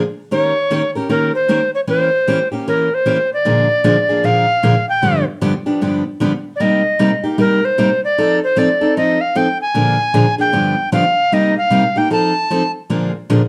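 A swung 4/4 pulse at 152 BPM carries this playful, lively jazz passage in Bb mixolydian, cut from a longer piece. A picked steel-string acoustic guitar supplies the accompaniment from the start to 13.4 seconds, its bright, fresh-stringed concert tone sitting up front with finger squeak audible. The tenor recorder takes the melody from 0.3 seconds, pure and woody, with tongued notes, chiff at the onsets and vibrato, also placed up front. The harmony moves through Eb7, Edim7, Bb7 and G7, then runs Cm7 to F7 to Bb7, passes back through G7, Cm7 and F7, and lands on Bb7. A moderate club reverb and a dark, warm production surround the duo.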